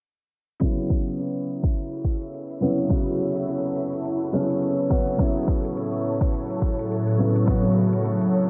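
Soaked in plate reverb and softened by a low-pass filter and a filter sweep, this dreamy, earthy organic downtempo excerpt at 105 BPM in A major opens at 0.6 seconds with a mellow, boxy felt-muted upright piano pumping through analog chorus, delay and shimmer reverb over a deep, overdriven electronic kick and a very quiet shaker, before an ethereal, airy pad of detuned sawtooth and triangle layers with a noise layer, ensemble chorus and phaser arrives with a slow attack at 2.0 seconds, the harmony moving from A to A69 at 5.2 seconds.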